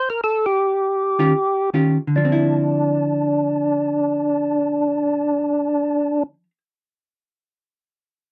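A percussive tonewheel organ opens this smoky, soulful jazz excerpt in free time, carrying the melody with a fat, lightly overdriven tone, third harmonic percussion, vibrato and a slow rotary speaker, with the pace slowing over the first 2.1 seconds. At 1.2 seconds a dark, clean, picked hollow-body electric jazz guitar joins in accompaniment, both parts sitting up front as the harmony moves from Gm through Eb9 to Dm9. The sound is a dry, close 1970s-style studio recording with moderate booth ambience, and it is cut from a longer piece.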